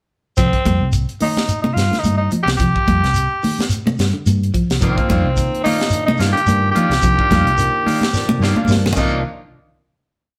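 A raspy, gritty tenor saxophone sits up front with motif-based call phrases over an intense, funky afrobeat groove in C minor at 108 BPM, riding a single Cm11 chord with a swung sixteenth feel. Beneath it, a round, dark hollow-body bass plays a syncopated riff, a tight funk kit with bright cymbals and a high-tuned snare drives the afro groove alongside damped, high-tuned congas and a grainy shekere, while a clean picked guitar holds a background ostinato. At 4.8 seconds a twangy, slightly broken-up guitar adds strummed upper chord shapes and a barky tine electric piano with overdrive and phaser joins with rootless syncopated stabs, before a drum fill at 8.1 seconds leads into the final hit at 9.2 seconds, all played live in one room with moderate studio reverb.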